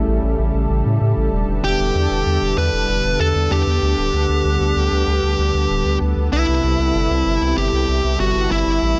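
Synthwave at 96 BPM in a straight 4/4, this nostalgic, cinematic excerpt drifts through A7, Em7, Gmaj7/D and Cmaj7. A lush unison pad holds sustained chords throughout, its detuned sawtooth tone thick and warbling under chorus, with a slow attack and long release. Beneath it, a round analog bass sits deep and dark, its fast attack and tube saturation giving the low end a sustained, rounded weight. At 1.6 seconds a fuzz lead guitar enters with the melody, its picked, compressed tone gritty with distortion and trailed by delay. The pad, bass and guitar all sit up front in a dry sound with little reverb, and the passage is cut from a longer piece.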